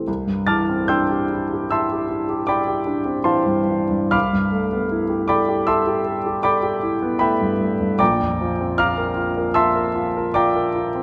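A polished grand piano sits up front in a moderate concert hall, its long sustain carried by a reverb that hangs for about 1.9 seconds, and the sound of its action is audible close by. This is a short fragment cut from a longer impressionist solo piano piece, luminous and dreamy in mood. It moves in an unhurried 5/4 at roughly 65-80 BPM, with a flexible rubato that lets the phrases breathe. The lone piano plays throughout its 11 seconds, spanning a broad register from Bb1 up to A6 with a clear, intimate presence. The harmony rests on a rich G13/C from the start before shifting to a Bbadd9 at 8.0 seconds.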